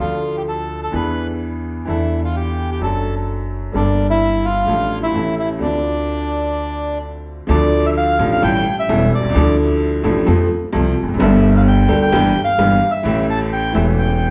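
Rubato 4/4 at 129 BPM drives this dramatic, melancholic tango in D minor, where a reedy, dark, close-miked bandoneon sings the melody up front over clear, boxy baby grand piano accompaniment and a woody, thumpy pizzicato upright bass on gut strings, all heard from further back in a large studio reverb as the harmony moves from Dm through E7 and Gmadd9 to a closing A7 at 13.0 seconds.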